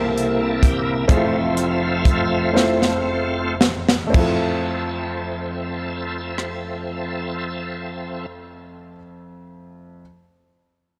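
A bright, shouting tonewheel organ with key click and slow rotary swirl carries this jubilant, hopeful slow gospel excerpt in 6/8, soloing over a C7 to Fmaj7 change as the tempo slows through the opening 4.1 seconds, while a clear grand piano accompanies and a crisp, airy drum kit with punchy kick, high-tuned snare and dark cymbals adds a fill from 2.6 seconds, all set in a lush hall reverb.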